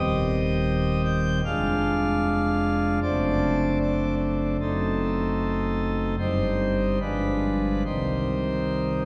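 A pipe organ's principal chorus plays alone from the start, its full, romantic voicing placed up front and spanning Eb1 to G5 in a solemn, dark chorale in C minor. The pace is rubato, around 70-77 BPM in 4/4, moving through diminished and dominant chords such as F#dim7 and G7b9 before settling on C minor near 7.9 seconds. A wet church reverb with a 2.5-second tail surrounds this brief fragment of a longer piece.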